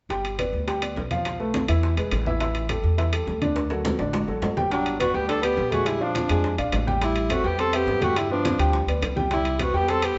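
A straight 4/4 Afro-Cuban jazz groove, sophisticated and danceable, runs from the start on ringing, close and dry timbales, thick-skinned, low-tuned congas in the background and very quiet, round bongos, under a warm, vintage upright piano up front and a pizzicato upright bass with steel strings. After a drum fill from 3.6 seconds, a breathy alto saxophone with light vibrato and a smooth top takes the melody up front at 4.7 seconds, joined on a second line by a mellow, distant tenor saxophone with scooped notes and a soft attack. The band plays live in one large studio with moderate reverb, in a passage cut from a longer piece.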